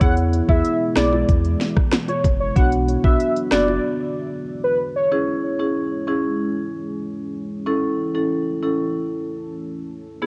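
Bouncy and hypnotic, this dancehall excerpt at 94 BPM sets a velvety, chorused sawtooth lead with analog delay and an up-front marimba over a deep, dark pad that pumps with sidechain and glows with built-in reverb, moving through E, Bm, C#m and A. An electronic island pop kit with a knocking kick and sharp snare drives the opening alongside a full sine sub bass with tube saturation and low-tuned bongos in the background, until the rhythm section stops at 3.8 seconds for a break and the lead ends at 5.1 seconds, leaving marimba and pad. The whole recording carries spring reverb and the warble of worn cassette tape.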